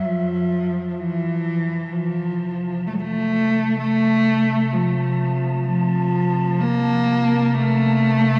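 Dark ambient drone at a slow 64 BPM in 4/4, this short passage cut from a longer piece sits in F major, tuned slightly sharp to A4 = 445 Hz, with a dark, unsettling mood. A single bowed cello carries the melody up front, its woody, vibrato-laden tone sounding distant through a diffuse ambient delay as it moves between E3 and Bb3. Beneath it, a deep, rumbling drone spanning F2 to A3 fades in across the full 8.4 seconds, its detuned, warbling, vintage character carrying an ominous weight. An airy, breathy texture resembling tuned wind also fades in from the background, holding a dark A5. The whole rests on a single F chord, bathed in a cathedral-like reverb with a 5.7-second decay and a dark, warm production.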